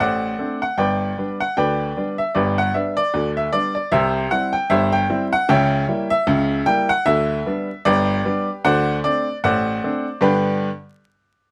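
A lone upright piano opens on a D5 chord before settling into a playful, cheerful ragtime strain in G major at 76 BPM in 2/4, swung lightly on the sixteenths and tuned to A4 = 442 Hz. Its woody, up-front tone with short sustain spans G1 to G5, moving through G, C, C#dim7, G/D and D7 before landing back on G at 10.2 s as a new section begins, and the piano stops at 10.7 s. Close, detailed miking, light reverb and a bed of vinyl crackle frame this cheerful fragment cut from a longer piece.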